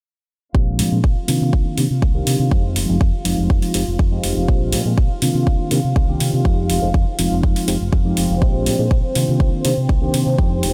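A punchy, up-front electronic kick anchors this nostalgic, funky slice of filtered disco house, joined by metallic hi-hats that pump with the sidechain from 0.8 seconds. A round, dark fingered electric bass and a clean tine electric piano, colored by phaser, pump under the same low-pass filter sweep, while a soft-attack, floating violin section holds smooth sustained chords. The harmony cycles through Bb13, Cm7 and Fm9 in a light reverb, in a passage cut from a longer piece.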